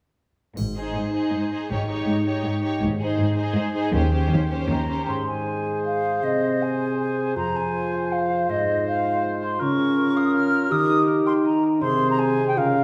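In a brisk, straight 3/4 at 160 BPM, this fast romantic orchestral movement in Ab major feels dramatic, spirited and graceful, opening with lush, vibrato-rich string sections: violins carry the melody over a second violin line, an expressive viola accompaniment with portamento, and an intense cello and rich double bass foundation, while a ringing harp plays arpeggios throughout and a dry triangle sounds briefly in the background. Around the 5-second mark the strings give way to the winds: an airy, up-front flute enters at 4.7 seconds, and from 5.1 seconds a background clarinet and a solo oboe join it in adding second lines over tight, softly attacked French horn chords. The whole excerpt sits in a wet recital hall reverb.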